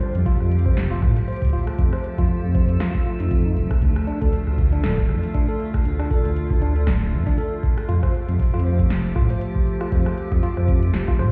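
A lightly swung 118 BPM groove in 4/4 anchors this glitchy, cerebral IDM fragment, where a deep, tape-warm electronic kick sits up front beside a rumbling, detuned sawtooth bass, an analog drum machine adds punchy snare, rim clicks and metallic hats through a delay, a tine electric piano spins echoing arpeggios, and an icy, crystalline glass pad holds chorused chords over Fadd9 and Dm, all heard muffled as if through a wall in a stone room before a drum fill at 10.9 seconds.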